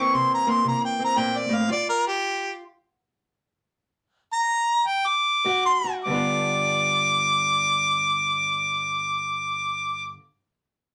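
Swung eighths in 4/4 at 99-118 BPM give this gritty, swaggering acoustic country blues in G mixolydian its strut, with a clear, close-miked harmonica up front carrying the melody in a jazz style with light vibrato and scooped notes over a dark, woody, boxy fingerpicked parlour guitar on old strings, as the groove slows from 1.7 to 6.0 seconds and halts in a stop from 1.7 to 5.4 seconds before a new section begins at 6.0 seconds in a moderate studio room.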